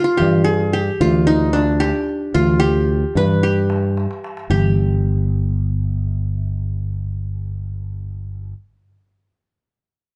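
A live ensemble shares one large studio, with a moderate reverb around the players and a top end that stops entirely at 10.5 kHz. This hypnotic, longing Arabic maqam piece in G maqam hijaz moves at 112 BPM in a straight 4/4, and is cut from a longer performance. Up front, the plectrum-plucked qanun carries the melody between D4 and B4, its triple strings ringing bright-edged over a sustaining fretless electric bass that growls from G1 to G2 with a direct, amped tone. A small, high-pitched clay darbuka with a natural skin sits further back in the room, played with hard hands and sounding distant. The drum breaks into a fill from 4.0 s as the music moves into a second passage at 4.5 s, then falls away at 4.8 s, and the qanun and bass carry on.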